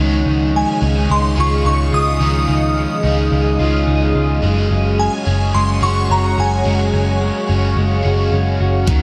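A lush hall reverb bathes this dreamy, ethereal stretch of dream pop, cut from a longer piece and moving at 108 BPM in 4/4 with a straight feel in Db major. An evolving, granular pad with an octave-up shimmer holds sustained chords high above, colored by chorus and phaser, while a compressed, overdriven electric guitar fills in accompaniment beneath it through harmonic tremolo and shimmer reverb. A second guitar, dark and just at the edge of break-up, picks arpeggios through delay and subtle chorus. Up front, a round, foam-muted vintage electric bass anchors the low end. From 0.6 to 7.5 seconds a bright, warbling FM bell carries the melody, its detuned tone haloed by ensemble chorus and delay, as the harmony shifts from Dbadd9 to Gbsus2 at 4.4 seconds. Only at 8.9 seconds does a crisp 8-bit drum machine appear, its thumpy kick and hi-hat sounding up front.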